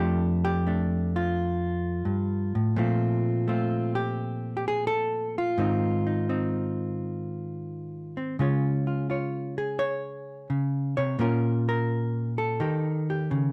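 A dark recording with light reverb places a clean, picked hollow-body electric jazz guitar up front, heard alone through this 13.5-second cut from a longer piece. At 85 BPM in 4/4 with a swung eighth-note feel, the solo guitar spans F2 to Db5 and moves through F69, Bbsus2, Ab6 and Db before closing on Bbm and Eb7. The mood is warm and sophisticated.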